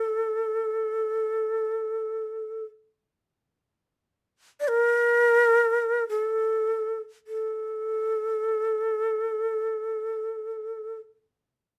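A moderate studio ambience with a short, natural decay frames this short passage of austere, calm Japanese traditional chamber music in free time. A solo shakuhachi sits up front from the start until 11.0 seconds, its breathy, bright bamboo tone carrying lifted highs, soft attacks and vibrato within a narrow span from A4 to D5. The line slows from 2.9 to 7.3 seconds before moving into a new section.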